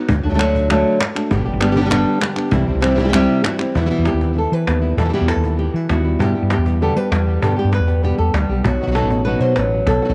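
Passionate and fiery, this flamenco passage cut from a longer piece drives along at 196 BPM in a straight 4/4. A dark, fingerpicked flamenco guitar carries the melody up front, its finger squeak audible, while a second fingerpicked guitar with a warm tone adds stabs through tape echo from 1.3 seconds. Underneath, a woody fretless electric bass sits up front, growly, round and punchy with an amped, hollow-body character. A cajon with faint snares and soft hands stays in the background with a vintage, band-limited sound, and crisp, dry palmas hand claps join only until 3.8 seconds, when the harmony shifts from a D, G, C opening to a stretch moving through Em, G and B. Light reverb gives the whole a small-room ambience.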